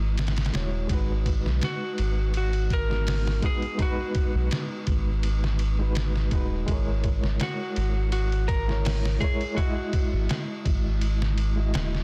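Smoky and melancholic, this trip hop excerpt from a longer piece moves at an unhurried, straight four-to-the-bar pace. A clean electric lap steel carries the slide melody through tape echo in a fairly narrow upper-middle range, falling silent at 10.6 seconds. Beneath it a reedy electric piano, heard through its built-in speakers with a fast tremolo and its own tape echo, holds the accompaniment over chords moving from Emaj7/G# to G#m7, then F#7/G# and back. A round, deep analog bass with a nasal, filter-plucked tone sits up front in the low register. The sampler-style drum kit enters at 0.2 seconds, pitched down, muffled and compressed, with a thumpy kick, medium-tuned snare, hi-hat and ride placed forward in the mix. Digital ambience and a dense, heavily limited modern master give the whole a close, tape-tinged haze.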